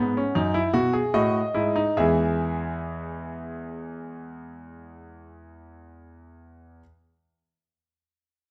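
A clear, slightly worn concert grand piano opens over a B7 harmony, slowing down through the first 2.0 seconds before settling onto E, in this short, joyful passage cut from a longer baroque-style three-part fugue. The solo piano sits up front with a natural tone and deep bass, its three voices spread from low register to upper treble with an elegant, straight-metered poise. Close, detailed miking captures the instrument inside a moderate recital hall reverb that gives the lines a gentle bloom.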